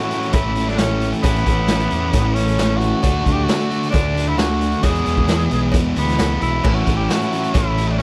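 A raspy, growling tenor saxophone with slapback echo carries the melody over two overdriven guitars, one bright and one sludgy in the background, in this driving, sunny classic rock excerpt in A major at 133 BPM, backed by a punchy overdriven fingered bass, a gritty garage drum kit with dark cymbals in a small, pumping room, and a metallic cowbell tucked behind, moving from A to D, E and back to A.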